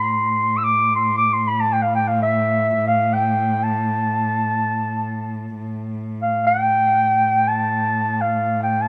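Close, detailed microphones and a light reverb give this short Turkish makam ensemble recording an intimate, up-front presence. A dark, breathy clarinet carries the melody from 0.0 to 8.9 seconds, using a hushed subtone, soft attacks, scooped notes and a gentle vibrato in a jazz-tinged style, with a tape echo trailing its phrases. Beneath it, a single bowed cello holds a steady drone on A2 with a rich, slightly nasal and boxy tone, its own vibrato and portamento adding expressive shading. The pairing of the whispered reed line over the sustained string bed creates a longing, hypnotic mood. Cut from a longer piece, it feels suspended and unhurried, like a moment of quiet reflection.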